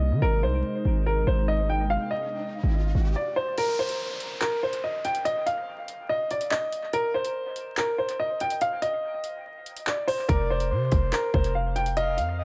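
A half-time drill groove in 4/4 sets a menacing, cold tone in this hip hop clip, as a clear, woody upright piano carries the melody throughout, its action noise audible beneath a low-pass filter and dub echo. At the start a smooth, detuned analog pad with chorus and a punchy, heavy 808-style bass sit underneath while a downlifter and riser sweep in from 1.6 seconds, then a brief stop gives way at 3.6 seconds to a drum break of hard-clipped kick, metallic hi-hats, handclaps and crash cymbal carrying 12-bit sampler grit and echo. The 808 returns at 10.3 seconds alongside a breathy, flute-like synth lead with vibrato, in a dry, echo-heavy mix dusted with vinyl crackle.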